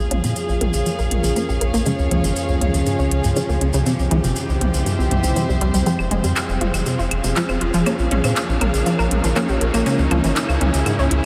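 A deep, round analog bass sits up front in this dark, melancholic melodic techno build-up at 120 BPM, cycling through Bbm, Db, C and Fm, while a bright, chorused analog pluck arpeggio with cassette-tape grit and analog delay and an evolving, morphing wavetable pad in the background both move through filter sweeps, a sul tasto studio string section adds intimate bowed texture, a very quiet nasal dub chord stab flickers with a phaser, a tense string-like drone enters at 0.2 s, a layered electronic drum kit of claves, handclaps, smooth hi-hat and toms joins grainy, distant maracas, and a faint riser arrives at 5.0 s, all soaked in a huge, dreamy reverb.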